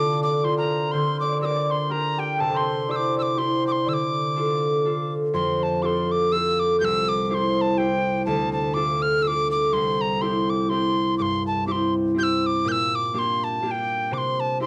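A swung Celtic waltz in 3/4 at 123 BPM, this spirited, wild folk excerpt moves through Dm, Gm/D, C and Fadd9 harmonies in a home cassette recording with moderate studio reverb. A tongued metal tin whistle carries the airy, chiffy melody up front, with a straight tone, lifted highs and a cassette-tape grain. Beneath it, a fingerpicked concert harp rings out in a mellow accompaniment, while a shimmering hammered cimbalom adds a second line until 6.3 seconds.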